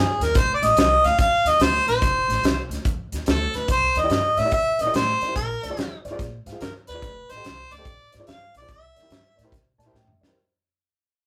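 The sound is a rough rehearsal-room recording with tube saturation and a moderate small-room reverb, and the whole passage fades out as a clip cut from a longer piece. It is a gritty, soulful electric blues shuffle at 144 BPM in 4/4, with a 65% swing on the eighths and tuning set to A4 = 437 Hz. A mellow harmonica carries the melody as the jazz-style solo voice, roomy and up front, with light vibrato and scooped notes, while a woody pizzicato upright bass on steel strings anchors the low end. A natural country drum kit, acoustic and up front, adds a punchy kick and fat snare alongside hi-hat and toms. A dark upright piano with long sustain enters at 4.0 seconds for quiet accompaniment over changes moving from F through C9, Bb9, F9 and Bb9 again to C7. Near the close, a piano fill at 9.5 seconds and a drum fill at 9.9 seconds carry the groove out.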